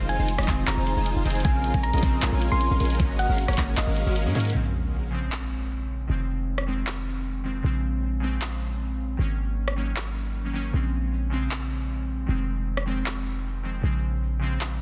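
Future bass with a dreamy, emotional half-time feel opens on a drop where huge, detuned supersaw chords and a round, tine-like thumb-piano-like synth pluck ride over a knocking overdriven kick, an up-front pop kit of handclaps, hi-hat and rim click, a deep, boomy 808-style bass and glassy, warbling digital keys, with the supersaws, pluck, bass and keys pumping. The kick drops away shortly before the supersaws and pluck fall out at 4.5 seconds into a very quiet sub drop, leaving keys, bass and kit to carry the rest of the cut through its Bbm7, Fm7 and Ab9sus4 chords, with light reverb on a dense, heavily limited master.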